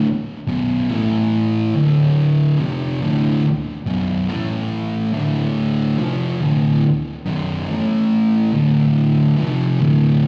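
A straight, even pulse in 4/4 drives this brief metal passage, cut from a longer piece, with a hypnotic, sludgy mood. A single thick fuzz guitar plays solo from start to finish. It is electric and picked, with a dark, double-tracked tone that sits up front and spans B1 to A3. Distortion and a digital delay thicken its sound as it cycles through B5, A5, D5 and B minor, bringing the changes around again until the chords fall away at 9.4 seconds. The performance sounds like a live gig heard through the venue's PA, wrapped in club reverb.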